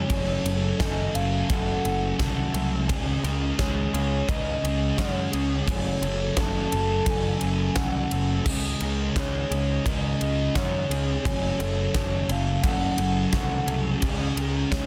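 A dark, up-front fuzz guitar riff with analog chorus drives this dreamy, blissful shoegaze and dream pop rock excerpt, joined by a growling overdriven picked bass, a punchy gated 80s drum kit with a fat snare and bright cymbals, a slightly broken-up electric guitar riff with reverse reverb tucked in the background, shimmering octave-doubled twelve-string acoustic arpeggios bathed in lush chorus, and a hollow, woody clarinet-like synth melody colored by vibrato, phaser and slapback echo, and the whole is pressed into a dense, heavily limited master.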